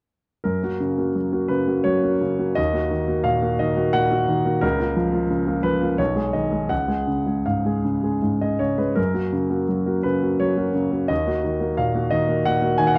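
A baby grand piano carries this romantic character piece alone, its tone natural and close, spanning B1 to G#5 from 0.4 to 13.0 seconds. The mood is hopeful and warm, set in F# major and tuned to A4 = 441 Hz, moving in 3/4 at roughly 78-90 BPM with a freely breathing rubato. The harmony travels from F# through D#m, A#m/C# and G#m/B to C#, then returns to F# at 9.0 seconds before turning again to D#m. A moderate large-studio reverb of 1.1 seconds surrounds the instrument, and the production leans dark and warm. This short passage is cut from a longer piece.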